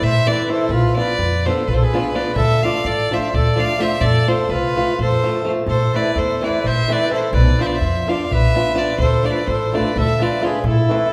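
A wet recital-hall reverb with a 1.6-second tail fills this short cut from a longer Balkan wedding-band piece, recorded in a church or concert hall. The mood is restless and virtuosic, driven by a straight 7/8 pulse at 253 BPM counted in eighths, with the harmony circling through Am, Bdim, Dm and F. Up front, a single bowed fiddle carries the melody with a clear, intense tone, light vibrato and a smooth top, while a reedy, hollow accordion adds a second line beneath it. A dark, fingerpicked flamenco guitar enters at 0.3 s with audible finger squeak, and a pizzicato upright bass on gut strings gives a woody, thumpy low end until 10.8 s. A darbuka with a clay shell and natural skin keeps the percussion warm and acoustic, with its own small-room character.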